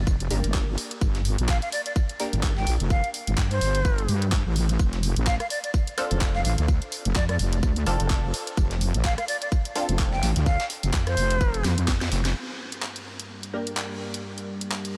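A bouncy, gritty bass house groove at 127 BPM in 4/4 with a 16th-note swing, set in G minor, where an overdriven, tight electronic kick sits up front beside a garage kit of handclaps, hi-hat, rim click and a cracking snare, while a very quiet, tape-toned electronic tambourine and snare adds sampler grit underneath. A heavy, saturated wobble bass pumps against the kick alongside nasal, band-passed sawtooth chord stabs with phaser and delay, and from 1.5 s a breathy jazz flute with vibrato and 12-bit sampler crunch floats a melody over the Gm and F6 chords. After a drum fill and a band accent at 12.2 s, the bass drops out and a moody, dark analog pad takes over beneath a filter sweep on the stabs until the cut at 15.0 s.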